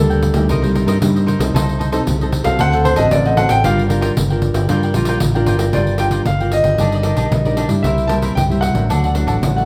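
A clear concert grand piano carries the melody from the opening, its deep bass and long sustain ringing over a classical, thumb-plucked nylon-string guitar and a punchy, up-front fingered electric bass, while cavaquinho and jingly pandeiro enter at 0.1 seconds in this lively, yearning samba and choro excerpt in G minor at 114 BPM. The piano's solo runs to 5.7 seconds before the music moves into a new section, with the crisp, picked cavaquinho and close, hard-handed pandeiro keeping a straight 4/4 feel as the chords travel from Cm7 toward D. The band sounds as if playing live together in one room, bathed in a wet, large-studio reverb.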